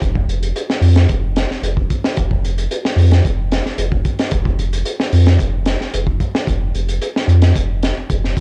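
A saturated sub bass and a crunchy breakbeat drum kit start together in this driving, funky afrobeat excerpt at 111 BPM, the deep, thick bass sitting up front between F1 and F2 while the gritty kit, with its tight kick, high-tuned snare, hi-hat and rolled-off top, sounds dark and close in a dry home cassette recording that runs to about 8.4 seconds.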